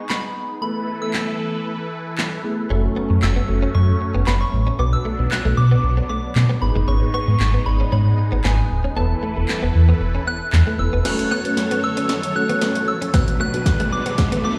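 A straight drum machine drives this energetic dance-pop excerpt, its warm, tape-toned kit led by a punchy kick and snare sitting up front along with handclaps, hi-hats and crash cymbal, and the snare, claps and hats are given a short room sound. A soft, pure FM synth bell carries the high melody through chorus, phaser and tape echo. Beneath it, a mellow tine electric piano heard through its built-in speakers and a bright, detuned supersaw swell holding sustained chords both pump against the kick. At 2.7 seconds a deep, full sine sub bass with an added octave arrives up front alongside a clean, compressed, direct-recorded electric guitar riff with ensemble chorus. The bass drops out as a build-up with a drum fill begins at 11.1 seconds, and an electronic riser joins in the background from 11.8 seconds. Everything sits in light reverb, played on a big sound system in a bare room with stone room reverb.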